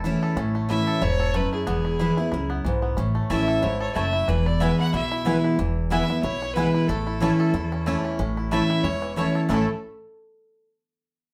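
A brisk 184 BPM bluegrass groove in 4/4 with a light swing on the eighths drives this lively, virtuosic fragment in A major, moving between A and E chords. A bright, full-bodied picked dreadnought guitar sits up front over dark, thumpy pizzicato upright bass on gut strings, while a twangy, percussive fingerpicked banjo carries the melody alongside a clear, intense fiddle with light vibrato that enters at 0.7 seconds. A woody, double-strung mandolin adds stabs from 3.3 seconds, and a studio reverb places the ensemble further back in the room.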